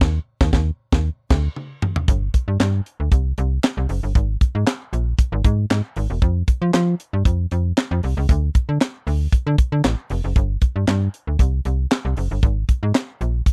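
A snappy, metallic FM slap-style bass sits up front beside a tight, dry funk kit of high-tuned snare, tight kick, hi-hat, toms, handclaps and crash in this slick, late-night early-eighties boogie funk excerpt, which opens on a band accent capped by a drum fill at 1.6 seconds before settling into the groove at 2.1 seconds, all captured in a close, dry 1970s-style studio sound with little reverb.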